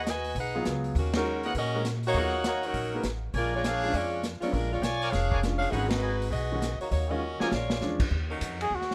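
A swung 4/4 at 201 BPM drives this brassy, sultry big band swing fragment in Eb minor, where a clear saxophone section with vibrato carries the melody over brilliant trumpet stabs, a woody pizzicato upright bass, a vintage drum kit with dark cymbals and a clear grand piano, with band accents at 1.1 and 5.9 seconds and a drum fill before the saxophones settle into sustained chords and a breathy, whispered solo trumpet slips in at 8.6 seconds, all under light reverb.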